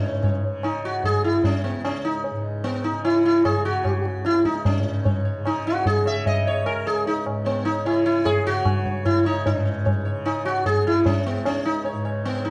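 A buzzing, shimmering sitar sings a round, up-front melody over a softly plucked tanpura drone, with a high-tuned tabla entering at 0.2 seconds with short, close and dry strokes. This introspective, meditative Hindustani classical passage, cut from a longer piece, moves in a straight 3/4 at 150 BPM in C# raga kafi, its sitar ringing with sympathetic strings while the tanpura hums low beneath. A dark, warm recital-hall setting frames the sound, and a new section begins at 9.5 seconds.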